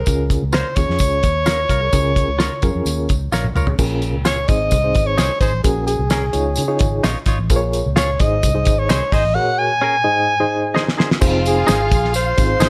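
Warm and uplifting, this short cut from an uptempo 1960s-style soul tune moves at 129 BPM in Db major, led by a breathy, intimate alto saxophone with scooped notes sitting up front. Beneath it, a dark, round muted electric bass, a reedy electric piano with light overdrive and fast tremolo, and a thuddy cloth-damped drum kit with a fat snare and two short fills drive the tune, while a twangy, clean guitar adds stabs from 0.5 seconds and a jingly tambourine sits in the background. At 11.2 seconds a smooth violin section enters with a second line, all within a light small-room reverb.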